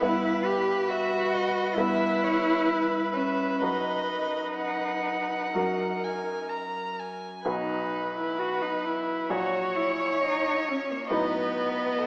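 Classical slow romantic movement for piano quartet in B major at 62-69 BPM, serene and warm in mood, with a smooth, vibrato-rich violin carrying the melody while an up-front cello sings an expressive second line with soft attacks and portamento, a close, even viola and a clear yet worn grand piano fill the accompaniment, and chords moving from Em/G through B/F# and F# to B7/A sit in a reverberant recital hall heard through a small speaker, all in an excerpt cut from a longer piece.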